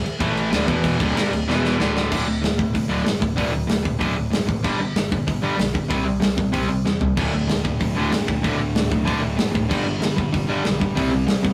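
This rough rehearsal-room recording has a small room's moderate reverb and a saturated glow, capturing a rowdy, rebellious burst of punk rock cut from a longer piece. At 190 BPM in a straight 4/4, three guitars drive the riff through power chords that move among A5, D5 and E5 before shifting through D5, G5 and C5. The bright, overdriven semi-hollow guitar sits up front, and a very quiet, compressed distorted guitar adds edge beneath it. A double-tracked fuzz guitar sits in the background, dropping out at 2.1 seconds and returning at 7.2. An overdriven picked bass growls underneath, while a tight acoustic kit with a medium-tuned snare and rolled-off top punches up front with crash, hi-hat, kick, snare and toms, its short fills pushing the riff into each new stretch.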